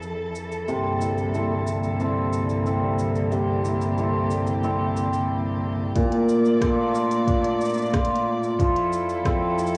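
Folktronica at 91 BPM in C mixolydian, warm and hopeful, this cut from a longer piece opens with a rich, bowed string quartet holding sustained chords with vibrato, while a flickering, grainy granular texture hovers in the background and an organic electronic kit ticks along with smooth hi-hats, rim clicks and shaker. From 0.7 seconds a shimmering, ringing cimbalom sits up front with hammered arpeggios through tape echo. The texture drops out as a short break arrives, and a soft, overdriven electronic kick enters at 6.0 seconds as the harmony moves from Fmaj7 and C13 to Bbmaj7 and back to Fmaj7. The whole piece carries the hazy grain of a cassette home recording with light reverb.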